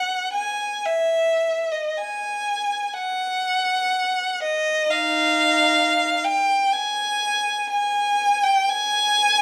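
A classical fragment for unaccompanied violin, meditative and lonely in its free, rubato phrasing, with one player's rich, focused, bowed tone and vibrato sitting up front yet sounding distant within a moderate recital-hall reverb, captured by close, detailed microphones across a range from D#4 to G#5.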